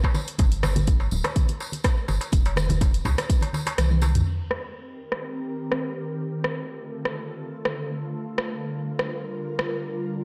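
This excerpt of driving afro house at 124 BPM opens at 0.0 seconds with a punchy, tape-tinged electronic kick placed up front, joined by low-tuned congas with a thick-skinned, close and dry sound, a crisp metal-shelled darbuka, and a jingly tambourine. A layered house drum kit of crash cymbal, hi-hat, rim click and toms comes in almost at once, re-recorded in a large room and muffled by low-pass filtering, while a deep, round sine sub bass pumps beneath the groove. Before 4.3 seconds the kick falls away and a drum fill leads into the next section, where the hand percussion and bass have stopped and a filter sweep runs over the drum kit. At 4.8 seconds an ethereal, airy pad built from detuned sawtooth and triangle voices with a noise layer enters up front, carried by ensemble chorus, phaser, its own reverb and sidechain pumping. Its slow-blooming chords move through Cm7, Dm and Gm7 inside a lush hall reverb and a dark, warm production.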